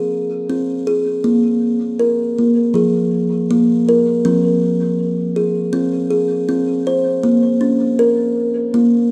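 A solo kalimba opens this short meditative world piece, its fingertip plucks woody and mellow, ringing up front through a diffuse ambient delay and the lush tail of a concert hall reverb. Moving at 80 BPM in F minor with a gentle swing, the hypnotic line rests on F minor, moves through an unharmonized moment, then returns to F minor before shifting to B-flat minor near 7.2 seconds. The soft, solid-board tone and spacious ambience keep the mood calm and inward throughout this fragment of a longer work.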